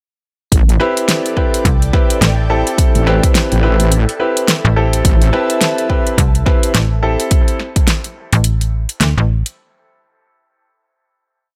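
A swung, broken beat drives this short, playful and gritty glitch hop drop, with a punchy electronic kick and a pop kit of fat snares and metallic closed hats, both tape-warm and up front, the kit's beat cut with edits. From 0.5 seconds a heavy, saturated wobble bass rolls out modulated phrases whose wobble speed keeps changing, its detuned sawtooth and sine layers thickened with chorus and overdrive. A clear grand piano adds syncopated, rootless chord stabs over an Am9 harmony, pumping against the kick and trailing dub echo. Deep in the background, a soft, breathy pad with a noise layer drifts through slowly shifting chords, coloured by chorus and phaser and pumping with the beat. From 1.6 seconds a snappy FM bass with a metallic attack answers the wobble bass in chopped phrases, carrying on after it stops, while the drum kit plays on to 9.6 seconds inside a digital ambience.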